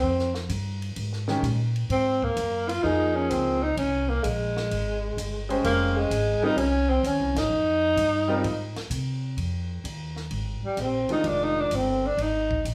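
A whispered, subtoned tenor saxophone with scooped notes and vibrato leads this hypnotic, intense modal jazz excerpt at 128 BPM with a swung 4/4 feel, over a woody, thumpy pizzicato upright bass, a compact cocktail kit with dark cymbals, a high-tuned snare and punchy kick, and a clear grand piano whose action noise and long sustain come through in a dry, intimate room, as the harmony moves from Bb7 to Fm7, the band hits an accent at 7.3 seconds, and the saxophone takes a solo over Fm11 in F dorian from 9.4 seconds.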